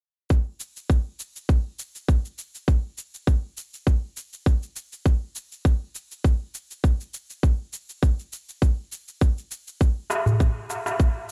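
Earthy and hypnotic, this short excerpt of organic downtempo rides a gently swung groove built on a tight, overdriven electronic kick drum that sits up front with small-room character, a faint, gritty cabasa carrying the same room tone, and a digital ambience hanging around them, before a crisp metal-shell darbuka played with soft hands enters in a large room at 10.1 seconds.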